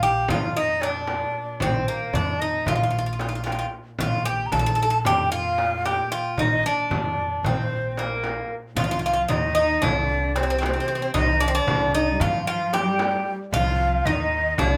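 A metallic, up-front bouzouki with doubled strings opens this longing, melancholic Turkish makam passage in 9/8, joined from the start by a breathy, bright ney with vibrato, a woody pizzicato upright bass and a very quiet bowed double bass drone. Darbuka and frame drum sit distant from 0.3 s, the darbuka in the background, and at 8.8 s the drone stops as a dark, expressive bowed cello with portamento takes up a second line. A moderate small-room reverb surrounds the ensemble in this passage cut from a longer piece.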